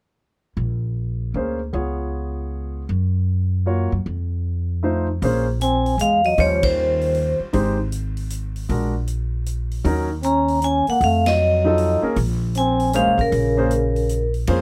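A swung jazz waltz in three with a smoky, cool mood, this excerpt opens with a woody, thumpy pizzicato upright bass at 0.6 s, soon joined by a warm concert grand piano with deep bass in an accompanying role. At 5.2 s a natural-sounding drum kit with a punchy kick, ride cymbal and hi-hat enters. The metallic, ringing vibraphone with motor vibrato then carries the melody up front while a mellow trombone sings a lower second line in two passages, band accents punctuate the phrases, and the close, detailed miking with little reverb keeps the sound intimate.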